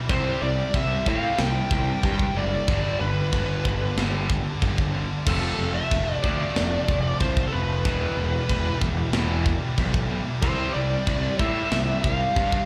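Two distorted rhythm guitars open this heavy metal passage together: a bright, high-gain part and a tighter one touched by slapback echo, both sitting in the background as they play their riffs. An instant later, the full band arrives at a steady 93 BPM in 4/4, with a big-room acoustic drum kit bringing gleaming china and crash cymbals, a medium-tuned snare and a tight kick. Alongside the drums, a growly, fuzz-drenched electric bass sits up front, picked and overdriven. Above them, a high-gain lead guitar carries the melody in a high register, its distorted tone warm and ringing with slapback echo. The harmony moves from C5 through G, F and E minor back to C, lending the aggressive drive an epic sweep, all heard as a live gig through a club PA with the venue's reverb filling the room.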